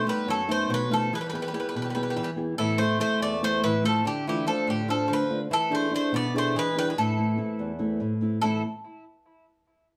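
Opening at once with a picked, metallic Greek bouzouki melody up front, a second double-strung bouzouki line beneath it coloured by analog delay, and a small, fingerpicked nylon-string guitar, this intense, tense Greek folk fragment for bouzouki band drives in a straight 7/8 at 287 BPM in A minor, tuned to A4 = 437 Hz, moving from B7 through E, Am, Dm and E7 back to Am in a reverberant studio room heard from further back, before all three parts stop at 8.6 s.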